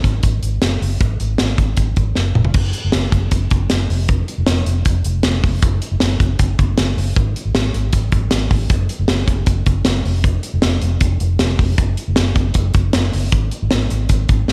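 Breezy and youthful, this jangly indie pop fragment cut from a longer piece pairs a warm, up-front studio drum kit (high-tuned snare, punchy kick, crash, hi-hat and toms, its top gently rolled off) with a dark, round, foam-muted fingered electric bass sitting low, all in a light reverb, and a drum fill at 2.2 seconds carries the groove into the next section at 2.6 seconds.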